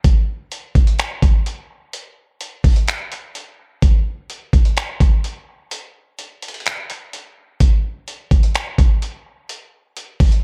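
A half-time hip hop groove at 127 BPM in 4/4 drives this short, hazy and ethereal fragment cut from a longer piece. A dusty, soul-flavoured sampler-style drum kit carries the whole 10.4 seconds on its own, built from finger snaps, hi-hat and a thumpy kick drum. The kit sounds gritty, compressed and overdriven, kept at its natural pitch and placed up front, with the character of having been re-recorded in a large room. A break arrives at 5.7 seconds, and a new section takes over at 7.6 seconds through to the end. The mix carries little reverb yet leans heavily on echo, which lends the beat its dreamy, floating haze.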